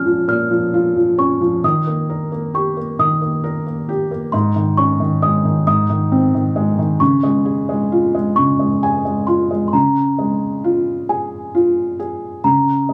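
A slow 6/8 lullaby at 44 BPM in Db major, this tender 12.9-second excerpt of children's music sets a small, bell-like celesta melody high over a softer-sounding but louder felt-muted upright piano whose intimate, close accompaniment carries audible action noise and a brief fill from 8.4 to 9.7 seconds, moving through Bbm, Eb, Absus4 and Ab to settle on Db in a modest studio room.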